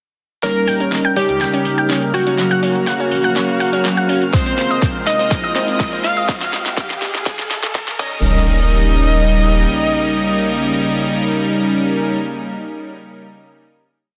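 A plucky, catchy unison lead with tape echo opens a euphoric, hopeful progressive house piece at 123 BPM in Eb mixolydian, entering together with a bright arpeggiated analog pluck looping a 3-step pattern against the bar, mellow supersaw stabs with syncopated pushes under a filter sweep, and programmed hats and backbeat with metallic hats and a fat snare, while a round, deep off-beat bass pumps against the sidechain. An evolving, warbling wavetable pad with vintage 12-bit grit and a very quiet glassy high note fill out the build, a riser in the background climbs from 3.8 s, and an overdriven, punchy four-on-the-floor kick drives the mix from 4.3 s through a drum fill. At 8.2 s the piece lands on a final hit, with the lead, pad and supersaw holding over the Eb7 chord in a dense, heavily limited master with light digital ambience.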